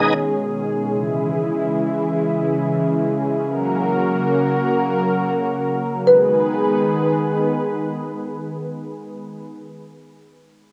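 A thick, detuned synth pad opens this hypnotic, tough dancehall excerpt, holding sustained chords in free time in G# minor. Its sawtooth and square-wave layers sit up front with a soft attack, long release and a shimmering chorus, moving from G#m to C#m and then to F#. At 6.1 seconds the harmony returns to G#m and a woody marimba enters on a single B4, its padauk bars carrying a boxy small-room character and an analog delay. The marimba stops at 8.0 seconds, and the mellow pad rings on until 9.4 seconds. A moderate spring reverb and the soft grain of a home cassette recording give the whole fragment an intimate, lo-fi feel.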